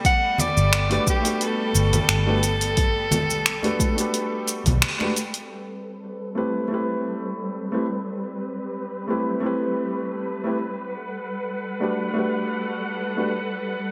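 Rich, bowed strings with vibrato and a soft attack open this relaxed sunset chillout piece at 88 BPM in A dorian together with an overdriven, up-front deep house kit of finger snaps, hi-hat and shaker and a deep electronic kick, while a clear soprano saxophone with scooped notes and delay carries the melody over ringing, high-tuned congas, a round, foam-muted electric bass and a dark, mellow baby grand piano with its own delay, set in bright 1980s-style digital production with plate reverb, until a band accent and kick dropout at 4.8 seconds lead into a passage from 5.5 seconds where only piano and filter-swept strings continue over Am9 and Gmaj9 chords, cut from a longer piece.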